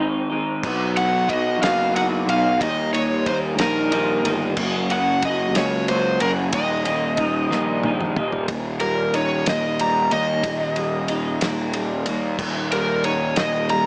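Heard through a small speaker with light reverb and studio ambience, this hypnotic, kaleidoscopic psychedelic rock excerpt moves in 6/8 at 61 BPM, with the chords shifting through Ab, B, Eb and Gb. A bright, twangy, slightly broken-up electric guitar through a small old amp plays the riff up front with flanger, over a round, dark fuzz bass and a cloth-damped, thuddy drum kit with a fat snare and tight kick. An overdriven slide guitar played with fingerpicks and bathed in analog delay carries the melody, and after a drum fill at 7.5 seconds it takes a solo from 8.5 seconds to the end.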